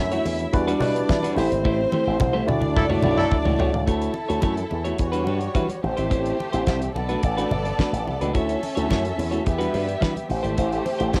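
A glamorous, celebratory disco passage, cut from a longer piece, opens with a lush bowed violin section carrying a smooth second line over a bright, twangy clean electric guitar, a worn and slightly out-of-tune tine electric piano, and a punchy slap bass pushed through an envelope filter. A dry, damped 70s drum kit with a fat snare and tight kick sits up front, joined by very quiet, low-tuned congas with a thick-skinned, damped tone. Early on, the drums play a fill while the band hits an accent, and a punchy horn section with light vibrato lands brief stabs at 2.8 seconds as the electric piano adds its own fill before dropping out at 3.9 seconds. The rest of the excerpt rides on lush ninth and seventh chords, with the strings, guitar, bass, drums and congas carrying the groove. Most parts carry a cassette-tape character, giving the home recording a homespun sheen under light reverb.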